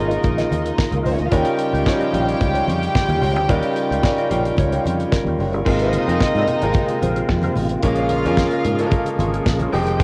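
Through the soft hiss of a home cassette recording with light small-room reverb, this driving, danceable disco cut at 111 BPM in Bb dorian pairs a dry, up-front 70s drum kit with a fat snare and tight kick, a foam-muted fingered electric bass, and a brilliant concert grand piano that plays a fill from 4.0 to 5.7 seconds. Meanwhile, pure, floating bowed strings carry a second line, a dark wah-treated electric guitar and a lightly overdriven tonewheel organ with key click and fast rotary speaker sit in the background, and very quiet thin-skinned congas add percussion over chords moving from Db69 and Eb9 to Ab69 and Bbm7.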